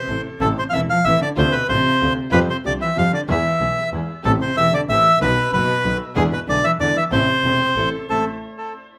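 A rough home-demo sound with moderate room reverb frames this passionate, melancholic tango fragment in a rubato three-four, where a reedy, bright bandoneon carries the melody up front through tape echo, a distant bowed cello with portamento sings a second line, a smooth classical clarinet in the background appears only at the very start and again from 7.4 seconds, a grand piano accompanies from behind, a dark, very quiet string section adds intimate sul tasto stabs, and a biting, earthy bowed double bass holds the low end.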